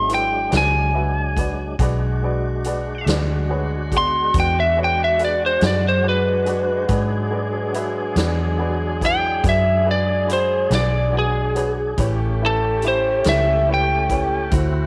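In a slow 12/8 at 47 BPM, this gritty, soulful blues fragment features a bright, twangy, slightly broken-up lead guitar soloing up front with slapback echo over a tonewheel organ's sustained chords through a slow rotary speaker with overdrive and chorus vibrato, a dark, round, foam-muted electric bass, a woody, slightly detuned upright piano, a punchy acoustic big-band drum kit of hi-hat, kick and snare, and a mellow saxophone section entering with soft-attack sustained chords at 1.8 seconds, all in a small, lightly reverberant room as the harmony moves from E9 to A9 at 12.0 seconds.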